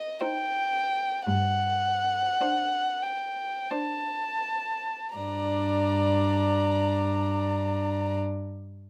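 A dark, woody solo violin opens this elegiac, yearning string quartet movement in G minor, singing the melody up close and up front with vibrato between Eb5 and Bb5. At 0.2 seconds a second violin and a viola join with soft attacks: the violin's rich, pure second line floats between C5 and D5, while the viola's airy-bowed accompaniment sits low between D4 and Eb4. The cello arrives at 1.3 seconds, holding a floating, distant G2 beneath the others, as the harmony moves from C minor to D7 over G. All four players bow sul tasto, giving the slow 3/4 music a veiled quality, and the rubato tempo of roughly 39 to 58 BPM slows through the opening passage before a new section begins at 5.2 seconds. Light reverb surrounds the ensemble in this brief excerpt from a longer piece.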